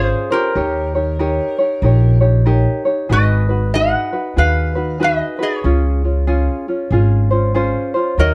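A metallic, nasal resonator slide guitar, played with fingerpicks and bathed in plate reverb, carries the melody up front in this relaxed, sunny Hawaiian excerpt with a gentle swing in 4/4. Beside it, a bright, light tenor ukulele fingerpicks the accompaniment while a woody pizzicato upright bass on steel strings anchors the low end, all three playing throughout the 8.3 seconds. The chords move from Dbmaj7 through Eb7 and Abm7 before returning to Dbmaj7, and the production is dark and warm with a touch of light reverb.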